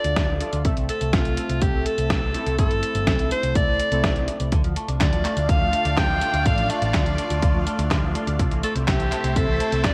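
Crackling with vinyl noise in a light reverb, this bittersweet, melodramatic italo disco excerpt in D minor at 124 BPM sets an up-front, bright alto saxophone melody with light vibrato, sampler grit and digital delay over a round, dark envelope-filtered picked bass, a punchy layered electronic kick from 0.2 s and a gritty, compressed soul sampler-style kit of snare, hi-hat and handclaps in gated reverb, while fat, detuned analog synth brass stabs end at 4.5 s as a clean, scooped envelope-filtered electric guitar takes up background arpeggios, joined from 4.8 s by a lush, thick unison pad with chorus and phaser.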